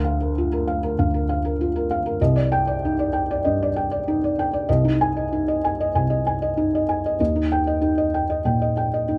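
A felt-muted upright piano plays alone for the full 9.2 seconds of this fragment of a longer neoclassical minimalist piece, its soft, dark tone sitting up front with thick felt, short sustain and audible action noise. The mood is intimate and wistful, with a rubato feel in 4/4 as the harmony moves from Bb/D through Cmadd9 and Ab/C to Eb at 7.2 seconds. Light reverb gives the close, hushed sound a little air.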